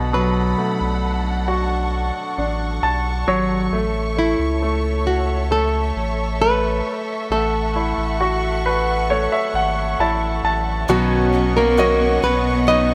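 A tender, emotional pop ballad at 67 BPM in a straight 4/4, this excerpt from a longer piece moves through Bm7, A and F#m7/A before settling on Badd9. A fingerpicked nylon-string guitar carries the melody with a classical, warm tone, while a brilliant, polished concert grand piano sits up front in accompaniment, adding fills around 2.4 and 8.2 seconds. Beneath them, a studio string section holds lush, bowed chords with woody vibrato, and a thick, saturated sub bass anchors the low end with a deep, sustained presence. At 10.9 seconds the arrangement opens into a new section as a smooth, rich symphonic cello section enters in the background with a second line touched by delay, joined by a full-bodied, freshly strung steel-string acoustic guitar picking arpeggios. Light reverb and studio ambience surround the mix.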